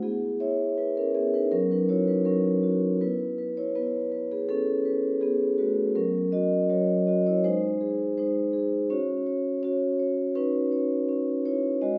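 A flowing, warm contemporary classical fragment at 81 BPM in a straight 4/4, cut from a longer piece, for solo vibraphone played with soft mallets and the motor off, whose mellow, dark, ringing, metallic tone spans F#3 to E5 over chords such as B9sus4 and C#9sus4, heard from further back in a recital hall with a wet 1.3-second reverb.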